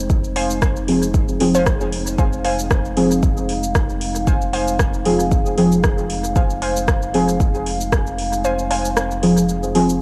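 A dark, nasal analog pad and a round sine sub bass open this nocturnal, hazy dub techno passage, the pad's sustained chords carrying chorus, sidechain pumping and cassette-tape character. A layered, up-front electronic kick and a soft, dry vintage rhythm box of metallic hats, rim clicks and shaker then set a steady groove with a light swing, the rhythm box trailing dub echo. From 0.4 s a warbling, dusty lo-fi pluck plays a riff with chorus, phaser and echo, while a deep, full-bodied chord stab sits prominently in front, its filter sweeping throughout. The kick stops at 8.0 s, leaving the stabs, pad, bass and rhythm box to carry on. Moderate spring reverb and a homemade cassette sound give this fragment of a longer piece its hazy, nocturnal atmosphere.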